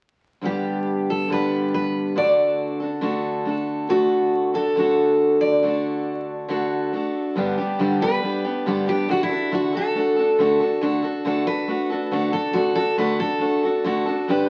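A picked steel-string acoustic guitar opens at 0.4 seconds with a warm, full-bodied dreadnought accompaniment over G and D chords, and a second picked acoustic guitar joins at 0.5 seconds with a bright, fresh-stringed melody sitting up front. This easygoing, sunny country fragment moves at 139 BPM in a straight 4/4, passing into a new section at 7.4 seconds that returns to the same G-to-D movement. The pair sounds as if played in a club with a wet reverb, all heard through the crackle of a very old 78 rpm record.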